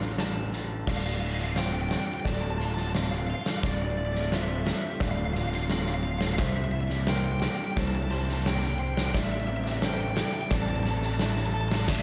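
A steady, straight 4/4 pulse is driven by an oversized, low-tuned drum kit, whose punchy kick, dark cymbals and gritty, saturated room sound sit up front, beside a growly, fuzz-laden fingered electric bass. This is a melancholic, cinematic post-rock passage cut from a longer piece, building from 0.9 seconds as the harmony moves through Dm7, C7 and Am7. A raw garage guitar carries the melody with overdrive and slapback echo, while a lo-fi electric guitar through a small old amp plays slightly broken-up arpeggios in the background with subtle chorus. Beneath them, a felt-muted upright piano adds very quiet, intimate arpeggios with audible action noise, and a soft, organ-like pad holds detuned, slow-attack chords from 0.2 seconds. A sludgy distorted guitar riff enters at 11.9 seconds, and a moderate scoring-stage reverb gives the whole a big arena sound.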